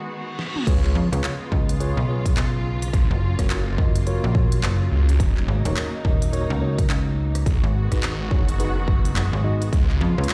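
Swung sixteenths in 4/4 drive this gritty, funky glitch hop excerpt, where a reverse cymbal rises over distant, woody, dark symphonic strings holding sidechain-pumped chords. A dubstep kit with a deep snare, crisp hats, claps, rim clicks, toms and crash enters with a fill at 0.4 seconds, and the drop at 0.7 seconds brings in a punchy, up-front electronic kick, mellow tine electric piano stabs with tape echo, and a swirling, thick phased saw bass with tube saturation. A snappy FM bass with a metallic attack joins at 1.0 seconds, and everything moves through G#m7, C#7, F#maj7 and D#m7 as if played on a big sound system in a bare stone room.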